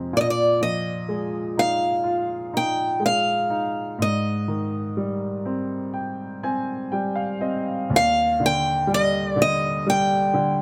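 In a straight, unhurried 4/4, this short acoustic folk-pop ballad moves at a slow, heartfelt pace with a nostalgic glow. A concert grand piano carries the accompaniment from the first moment, its open, clear tone reaching down into a deep bass register. Just after, at 0.2 seconds, a picked steel-string acoustic guitar enters with the melody, sitting in a narrow upper range and placed up front. The guitar has a woody, boxy parlour character, with the warm sound of old strings. The harmony moves from Bb7sus4 to Abmaj7, then settles onto Ebmaj7 as a new section begins at 7.9 seconds, all within light reverb, before the fragment is cut from the longer piece.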